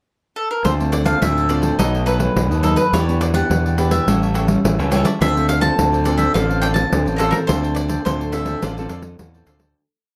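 An up-front, punchy electric bass with fuzz overdrive drives a samba bass figure under a bowl-back mandolin playing a motif-based melody in sentence phrases on its double strings, with crisp sixteenth-note cavaquinho strumming, a full-bodied fingerpicked nylon-string guitar in the background adding thumb bass and syncopated plucked chords, and a jingly pandeiro played with soft hands, giving this bittersweet, lively samba and choro piece in D minor at 105 BPM a close, detailed sound with light reverb before it fades out from 7.5 seconds.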